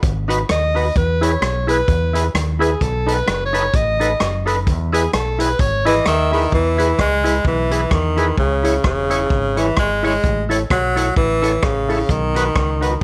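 Bouncy and upbeat, this ska excerpt in E major swings along at 129 BPM, with a deep, round fingered electric bass sitting up front over a vintage drum kit whose punchy kick, hi-hat and rim clicks have a rolled-off top. A dark, clean hollow-body jazz guitar and a gritty, overdriven tonewheel organ, its stabs coloured by key click, chorus vibrato and a slow rotary speaker, fill out the accompaniment. A breathy, intimate alto saxophone carries the melody until 6.5 seconds, and a bright, close-miked tenor saxophone with slapback echo takes over from 5.9 seconds, all set in a small room ambience.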